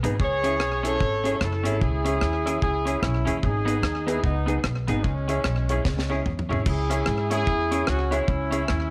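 A light studio reverb wraps this short, dry-sounding cut from a longer ska tune, which moves at a brisk 148 BPM in 4/4 with a swung eighth-note feel and a mischievous, energetic mood. The warm horn section carries the melody up front, punchy and present with a light vibrato and a slapback echo, entering at 0.2 seconds over a C# minor to G# minor progression. Beneath it, the pizzicato upright bass sits forward in the mix, woody and thumpy with the bite of steel strings, while a deep reggae drum kit with a high-tuned snare, tight kick, rim clicks, hi-hat, toms and crash keeps time through its own slapback echo. A bright, clean, compressed semi-hollow electric guitar adds picked accompaniment with a slapback echo too, and a slightly detuned upright piano with short sustain drops stabs from the background. A drum fill at 5.9 seconds leads the band back into a repeat of the opening section.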